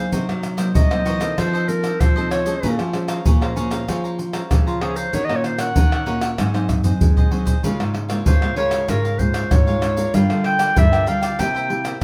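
A clear, classical-style clarinet leads this bittersweet, yearning samba-choro excerpt, singing its solo melody up front at 96 BPM in a straight 4/4 over chords that drift from Cm7b5 and F7 through Bbm9 and Ebm7 to a resting Db6. Beneath it, a picked cavaquinho adds a crisp, high accompaniment, while one fingerpicked nylon-string guitar supplies bright, fresh-stringed chords and a second fingerpicked nylon-string guitar carries a dark, full-bodied bass line. Maracas, a tight surdo, pandeiro and tamborim, played with soft hands and set up front, drive the groove from 0.1 seconds, with a drum fill from 6.4 to 7.6 seconds. The band sounds as though it is playing live together in one room, with a wet studio ambience around the acoustic instruments. The passage is cut from a longer piece and closes on Gm7 and C7.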